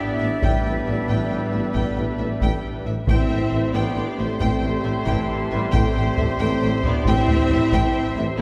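A close, dry taiko ensemble struck with heavy sticks drives this dark, epic orchestral film-score excerpt in A minor, moving at 90 BPM in a straight 12/8 under an expressive, vibrato-rich violin melody and a smooth, distant second violin line. Focused violas and mellow, tight French horns fill the middle alongside clear woodwinds and very quiet trombones holding sustained chords, while a roomy tuba, very quiet cellos and double basses anchor the bass on A. Hard-mallet timpani with calf heads sound briefly at 3.1 s as the harmony shifts from Em7/A to Am7, all set back in the wet reverb of a scoring stage.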